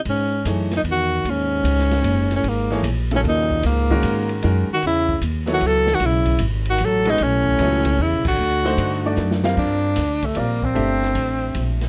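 Spiritual and intense, this excerpt of modal jazz in G# phrygian swings in 3/4 at 151 BPM, with a clear, close-miked tenor saxophone carrying the melody up front with soft-attack vibrato over a woody pizzicato upright bass, while a breathy, mellow trombone adds a second line in the background until 9.1 seconds. A natural, short-sustained concert grand piano with deep bass comps, entering fully at 2.7 seconds, and an open, dark-cymbaled drum kit with a boomy kick plays in a small room under light reverb. Sus4 and altered chords lead to a band accent at 8.2 seconds and a drum fill that opens a new section on Gm11 at 9.6 seconds.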